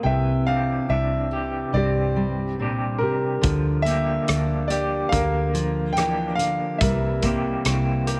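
Nostalgic and hopeful, this acoustic folk-pop ballad fragment sets a clear, smooth concert grand piano melody over fingerpicked steel-string acoustic guitar, a dark, slightly broken-up electric guitar with tremolo playing arpeggios through a small old amp, and a round, foam-muted vintage electric bass, while a loose indie drum kit of hi-hat, punchy kick and rim click joins at 3.4 s, the whole ensemble bathed in a moderate concert hall reverb.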